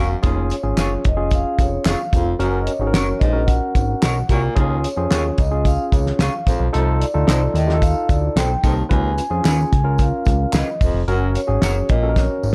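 Uptempo 1960s-style soul at 111 BPM in a straight 4/4, this short cut from a longer piece feels uplifting and danceable, moving through Db/F, Gb, Db, F7/C and Db7 before landing back on Gb. A vibraphone played with soft mallets carries the melody in a ringing, metallic, vintage tone with the motor off, while a baritone saxophone lays down a low riff with a soft attack and scooped notes in a jazz style. An electric guitar through a small old amp adds bright, twangy, slightly broken-up picked stabs, and a barky tine electric piano, lightly overdriven, fills in the accompaniment from 0.2 seconds. Underneath, a fat, thick analog bass mixes sawtooth and square waves with detuning and a moving notch filter, sitting up front beside a cloth-damped, thuddy drum kit whose fat snare, tight kick and hi-hat sound gritty and saturated with a rolled-off top. Tambourine, tube shaker and group handclaps sit low in the mix within a dark, small-room production, and a drum fill at 12.2 seconds closes the passage.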